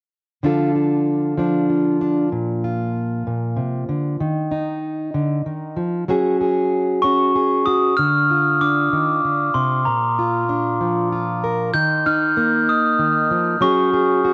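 A fingerpicked, plugged-in steel-string acoustic guitar opens this folk piece at 0.4 s, its jumbo body sounding dark and full with fresh strings, up front. The tempo sits at 64 BPM in a straight 6/8, and the mood is nostalgic yet hopeful as the guitar moves through Dm, Bb, Ebsus2 and Gbsus2, tuned to A4 = 439 Hz. At 7.0 s a glockenspiel played with soft plastic mallets brings in the melody with a mellow, bell-like ring, also placed up front and colored by cassette tape and analog delay. From 8.0 s the chord cycle returns with an Eb5 in place of the suspended chord, and both parts carry on together until the cut at 14.3 s. A moderate spring reverb surrounds the pair, and the home cassette recording rolls off the top end for a hazy, lo-fi sound.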